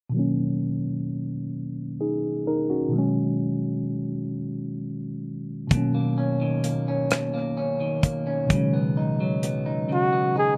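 A worn, slightly out-of-tune tine electric piano opens this slow six-eight R&B excerpt in B major at 43 BPM, its clean, direct tone shaded by a low-pass filter sweep as it alternates between Bmaj9 and C#9sus4. At 5.7 seconds a picked electric guitar at the edge of break-up joins as a second line, compressed and slightly broken-up, with a slapback echo. A damped 70s drum kit enters at the same moment, playing hi-hat, kick drum and rim click with a tight kick and a rolled-off top. Near the close, at 9.9 seconds, a close-miked flugelhorn takes a brief jazz-style solo phrase, with a soft attack, light vibrato and scooped notes. The parts sit up front in a dry, intimate and sensual sound with little reverb, and the short passage is cut from a longer piece.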